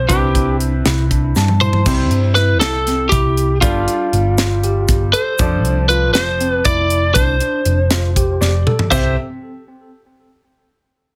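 Driving and bright, this progressive instrumental, cut from a longer piece, runs in 7/8 at 238 BPM in C major, moving from Cmaj7 through Gsus2 and F6 back to C. A twangy, slightly broken-up lead guitar carries the melody up front over a dark, round hollow-body picked bass and a crisp fusion kit with a high-tuned snare and punchy kick, while a brilliant grand piano comps, a clean tine electric piano plays arpeggios through delay, and a grainy tube shaker sits very quiet. The grand piano adds fills at 1.1 s and 8.2 s with drum fills close behind, and the mix carries light reverb and a heavily compressed, radio-like sound.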